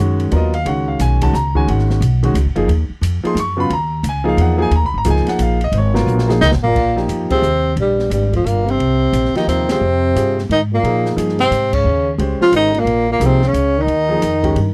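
A dry, close studio sound in a 1970s vein, touched with light reverb, frames this cool, intense modal jazz passage swinging in three, cut from a longer piece. A concert grand piano with deep bass comps beside a woody pizzicato upright bass played up front, while an acoustic drum kit with dark cymbals, a high-tuned snare and a boomy kick plays a fill at 6.1 s. At 6.4 s a breathy tenor saxophone enters with the melody, its light vibrato and scooped notes sounding distant yet roomy, joined by a mellow trombone on a second line as the harmony shifts and the band hits a series of accents.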